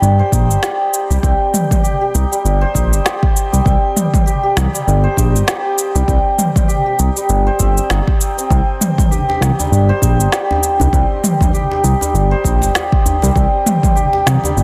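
A swung 16th-note groove at 99 BPM in 4/4 drives this earthy, hypnotic organic downtempo excerpt in C minor pentatonic, where a bright, ringing santur plays shimmering arpeggios through digital delay and shimmer reverb over a smooth, up-front sawtooth-and-square synth bass with vibrato and sidechain pumping, an overdriven organic electronic kit of shaker, woody snare and toms, a deep, layered electronic kick entering at 0.3 seconds, and an acoustic djembe played with hard hands that joins at 9.1 seconds, with the mix sitting in light reverb and digital ambience inside a dense, heavily limited modern master.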